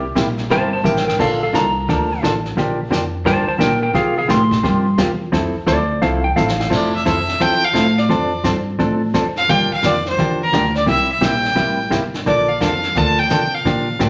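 A twangy, compressed lap steel guitar opens this down-home western swing piece with an up-front slide solo until 6.7 seconds, when a rich, earthy fiddle takes the melody, bowed close by a single player with light vibrato. Underneath, a hollow-body jazz guitar picks clean, dark accompaniment over chords such as C7, Bbmaj7 and Gm7 in F major, while a woody, thumpy upright bass on gut strings is plucked pizzicato. A vintage brush drum kit joins at 0.2 seconds, captured naturally in a small room with dark cymbals, a punchy kick and a rolled-off top, and adds brief fills. The swing runs at 173 BPM in 4/4 with swung eighth notes. A wet, large studio reverb gives the mix a roomy glow, and the piece is cut from a longer performance.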